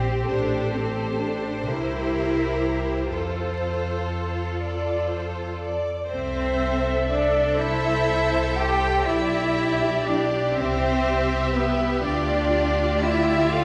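Classical slow romantic movement for string orchestra, tender and serene, at a rubato 40 BPM in 6/8, moving from F major to C major at 6.1 s, with a clear chamber violin section carrying the vibrato melody over a lush second violin line, a smooth, even viola accompaniment, a distant cello bass and an intense, up-front double bass, all bowed and heard from further back in a wet scoring-stage reverb with vinyl crackle and a dulled top end, cut from a longer piece.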